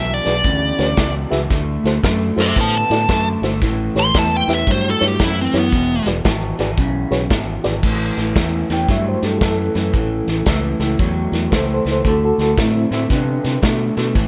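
Light reverb gives this gritty, soulful electric blues shuffle a compact, vintage sound, with a punchy, up-front drum kit pumping in a small room under dark cymbals and a rolled-off top. At 114 BPM in 4/4 with a swung eighth-note feel, the excerpt moves through E9, D9, A9 and back to E9 before shifting to A7 at 7.8 seconds and then D7 at 12.1 seconds. A smooth, overdriven lead guitar carries the melody up front until it stops at 6.1 seconds. Beneath it, an electric guitar through a small old amp plays a dark, slightly broken-up picked riff in the low register, while a fingered electric bass holds down the bottom with a warm tone. A mellow, reedy electric piano adds clean accompaniment through its built-in speakers, shimmering with fast tremolo.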